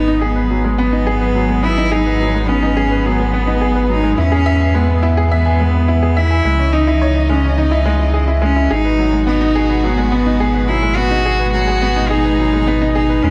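A straight 4/4 pulse at 106 BPM drives this cinematic, melancholic piano and strings electronica in G# minor, cut from a longer piece: a woody, slightly detuned upright piano riff and a rich, floating cello melody both carry digital delay over a round sine sub bass, while a dark chamber string section holds bowed, vibrato-laden sustained chords in the background as the harmony moves through G#m7, E and C#madd9 within a moderate scoring stage reverb.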